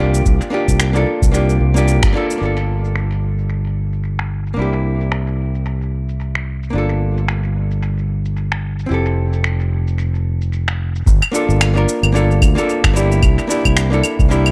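A growly, overdriven fingered electric bass sits up front through this relaxed, smooth sunset chillout excerpt, its bright amped tone carrying a swung groove under a dark, clean hollow-body archtop guitar that trails dub echo across chords such as Gm7, C7 and Fmaj7. Tape-warm electronic shaker, finger snaps and claves sit lower and softly filtered, while a deep, overdriven analog kick with large-room character enters at 0.3 seconds and plays until 2.1 seconds, a band accent lands at 2.0 seconds, and the kick returns at 11.1 seconds. Light digital reverb gives the echo-heavy mix a hazy, spacious sheen.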